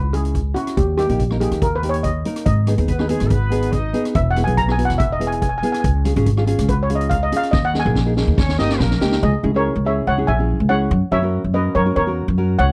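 A shimmering steel pan on soft rubber sticks carries the melody up front in this dramatic, intense calypso excerpt at 142 BPM, over woody, thumpy pizzicato upright bass, thumb-plucked classical nylon-string guitar, a street-band drum kit with a boomy kick and high-tuned snare and a fill from 7.5 to 9.2 seconds, and brief punchy, distant horn-section lines with vibrato, all in a dry, close 1970s-style studio sound.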